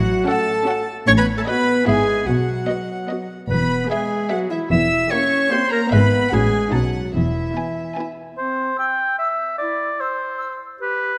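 A scoring-stage reverb gives this short excerpt of a playful, whimsical film cue a roomy glow, its mischievous, magical mood carried at 149 BPM in a straight 3/4 in E major. Sul tasto chamber strings open the cue: a floating, pure violin melody over a viola accompaniment, a second violin line in the background, a dark, woody cello and a soft double bass on the bass, and a tight French horn section holding smooth chords beneath. Up front, a clear solo clarinet carries a second line throughout, joined at 8.4 s by a smooth-topped oboe and briefly by an airy background flute section as the harmony shifts to C and then drops away.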